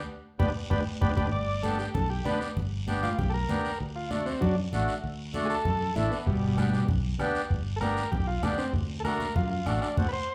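A fingered electric bass, dark and round, opens this festive cumbia at 0.0 seconds, and moments later combo organ, accordion, congas, guiro and bombo join for a joyful band accent in G major at a brisk 194 BPM in straight 4/4. From 1.3 seconds the up-front, vintage combo organ takes a solo, its clean, mellow tone touched with light vibrato as it leads over a progression that moves from G to D, back to G and on to D7. Beneath it, the accordion fills out the accompaniment with a reedy, full and smooth sound in dry tuning, while thick-skinned, medium-tuned congas and a raspy, close guiro keep the groove moving. The soft-beatered bombo, band-limited and set in the background, drops out after the opening accent and returns at 6.3 seconds, and the passage closes on another band accent with a drum fill. The whole group plays live in one room, bathed in a wet large-studio reverb, and this clip is cut from a longer piece.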